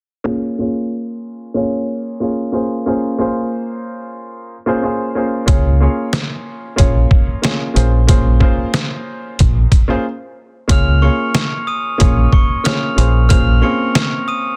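Gritty, pitched-down sampler drums with a thumpy kick and a round, punchy fingered electric bass arrive at 5.5 seconds beneath a dark, mellow grand piano colored by cassette tape and a filter sweep, moving between Db6 and Bbm9 chords, before a bell-like glockenspiel with tape echo carries the melody from 10.7 seconds after a brief break, giving this tough, reflective boom-bap hip-hop excerpt at 92 BPM, with a swung 16th-note feel, a dense, heavily limited sound in a small room.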